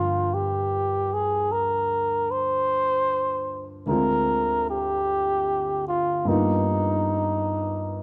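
Over a slow swung eighth-note feel in four, this smoky, wistful jazz ballad fragment puts a veiled, breathy cup-muted trumpet with light vibrato up front on the melody, while a smooth, vintage grand piano accompanies through the full 8 seconds over Gm7, Dm7b5 and G7alt, the pair set in a moderate large-studio reverb within a dark, warm production.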